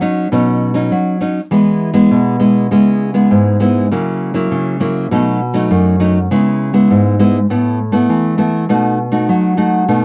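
A straight 4/4 samba rhythm carries this lively, joyful piece, which is cut from a longer work. A single nylon-string guitar plays alone for the full 10 seconds, fingerpicked in a classical manner and spanning F#2 to F#4. Its fresh strings give a warm acoustic tone, and it sits up front in a dry, close studio sound with a 1970s character and very little reverb. The harmony moves through Badd9, E and C#m7, then F#7/C#, B7, C#m7 and Asus2 before settling on B7 near the end. The tuning sits at A4 = 436 Hz, slightly below modern standard pitch.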